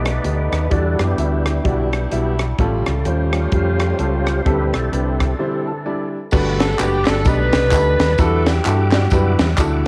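Soulful and uplifting, this uptempo swung gospel fragment, cut from a longer piece, opens with a clean tonewheel organ solo spinning through a fast rotary speaker with key click, over clear, worn concert grand piano, a round, up-front fingered electric bass and a crisp, airy fusion kit with a high-tuned snare and tight kick. Muted French horns hold nasal, metallic chords in the background through the opening section, and at a break at 5.4 seconds the piano adds a fill. From 6.3 seconds, tambourine and group handclaps join, and from 6.6 seconds a mellow horn section carries the melody with light vibrato, with most parts heard through cassette tape in a small, lightly reverberant home room.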